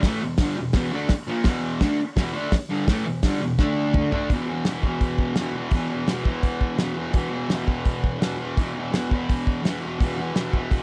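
A bright, double-tracked fuzz guitar drives this raw, swaggering garage rock fragment at 169 BPM, its distorted picked riff sitting up front and moving from E5 to D5 before returning to E5. Alongside it, a cloth-damped, thuddy acoustic drum kit in a small room, with a tight kick, medium-tuned snare, hi-hat, toms and a rolled-off top, keeps a straight 4/4 and plays a fill from 3.6 to 4.3 seconds that leads into the next section. The sound carries light reverb and some lossy compression artefacts, and the clip is cut from a longer piece.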